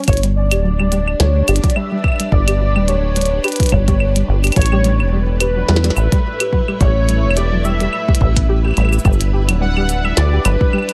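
The recording has an echo-heavy, lightly reverberant sound with lossy compression artefacts, and it is a short slice cut from a longer IDM piece in G lydian at 107 BPM, with swing on the 16th notes. The mood is playful and glitchy. A deep electronic kick sits up front, while a glitchy kit of tiny snare, clicky hi-hats, cabasa and claves plays in a small room ambience. A rubbery, saturated acid bass with a resonant sawtooth filter pluck holds the low end, and a soft string machine supplies silky, vintage sustained chords through ensemble chorus. A warbly, dusty pluck with 12-bit sampler grit, chorus and analog delay plays lo-fi arpeggios, and above it a warm, velvety, detuned synth lead carries the melody with vibrato, chorus and delay, as the harmony moves from G to Asus2 at 4.6 seconds and back to G at 9.0 seconds.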